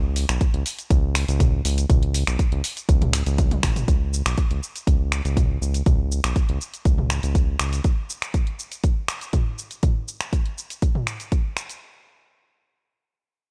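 A round, deep analog bass opens this afro house excerpt at 121 BPM in a straight 4/4, its detuned blend of sawtooth, sine and triangle tones sitting up front with a fast attack, sustained notes and sidechain pumping. The mood is warm and spiritual, and the piece starts on a drop, with a house drum kit of finger snaps, bright hi-hats, shaker and toms arriving almost at once beside a punchy, layered electronic kick. The kick is the most forward part of the kit, while the snaps, hats and shaker sit further back with a touch of studio reverb, inside an otherwise dry sound. A drum fill at 3.4 s leads into the second section, where the groove carries on. The dark bass drops out at 7.8 s, leaving the kick and the kit to carry the final seconds.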